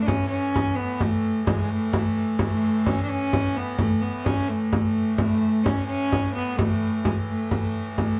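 Rustic and ancient in mood, this brief cut from a longer medieval dance moves at 86 BPM in a straight 6/8, counted in dotted quarters, and sits in A major. A rich viola da gamba carries the melody up front, its fretted, bowed gut-string tone biting and nasal, with a reedy, boxy edge, a light vibrato and a ringing quality in period style. Beneath it, a hurdy-gurdy holds a smooth, even wheel-bowed drone in a low register. A deep, large frame drum, played with soft hands and heard close and dry, enters at 0.1 s and stays prominent alongside the gamba. The three players sound together in a single room, framed by a studio reverb that adds a sense of space around the ensemble through to the end at 8.2 s.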